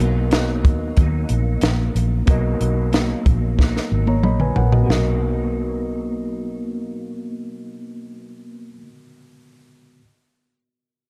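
A dry, up-front cocktail drum kit with a punchy kick and high-tuned snare drives this nostalgic, hazy bedroom-pop excerpt at 92 BPM in B major, rolling into a fill at 3.6 seconds before dropping out at 5.0 seconds, while a round, foam-muted vintage bass sits close beneath it, a twangy, slightly broken-up guitar through a small old amp shimmers with chorus and warbly pitch drift, and a clean, reedy electric piano holds a Bmaj7 colour in a dark, small-room mix.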